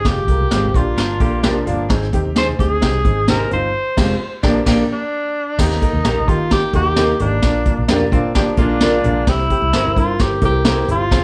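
A vibrato-laden tenor saxophone sings the melody up front over a bright, woody upright piano, a brushed drum kit with a punchy kick and dark cymbals, a round foam-muted electric bass and very quiet low-tuned congas in this warm, danceable uptempo 1960s-style soul cut at 130 BPM in Eb major, while a twangy, slightly broken-up guitar through a small old amp adds spring-reverb stabs and a clean, compressed direct guitar picks a riff from 1.0 to 4.8 seconds and again at 8.1 seconds, the band hitting an accent from 3.7 seconds in a small, roomy space.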